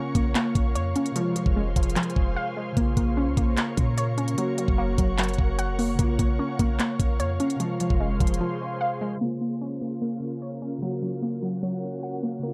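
A half-time trap groove drives this eerie, hard-hitting hip hop passage, with an up-front electronic kit of knocking kick, crisp hi-hats and handclaps alongside a deep, boomy 808-style sine bass, both dropping out at 8.4 seconds. Above them a warbly, dusty pluck runs lo-fi arpeggios through chorus, phaser and analog delay, while muted, felt-like synth keys add soft, intimate accompaniment and an ethereal, airy pad holds mellow sustained chords in its own reverb. A filter sweep opens the closing stretch at 9.2 seconds and the keys play a short fill near its end, all captured in a dry, gritty hardware sound.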